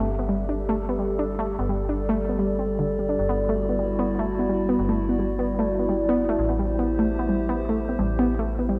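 A warbling, detuned tape-like pad in chorus and built-in reverb holds dark, nostalgic chords from the start, joined at once by a dusty, lo-fi pluck spinning up-front arpeggios through chorus and delay and a metallic, digital FM bass with fast, decaying notes, making an intricate, glitchy IDM fragment at 150 BPM in G major that moves from Gsus2 to Em7/G to Am7 inside a lush hall reverb and a rough home demo mix.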